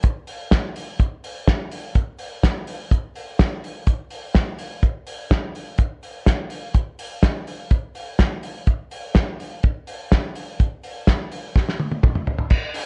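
Worn, warbling cassette tape with pitch drift, lossy compression artefacts and light reverb colours this restless, bittersweet indie pop fragment at 125 BPM in a straight 4/4, where an up-front, cloth-damped, thuddy acoustic drum kit in a small room plays alone with a tight kick, medium-tuned snare, hi-hat, toms and dark crash cymbal under a rolled-off top and vintage 12-bit sampler grit, before a drum fill arrives at 11.6 seconds.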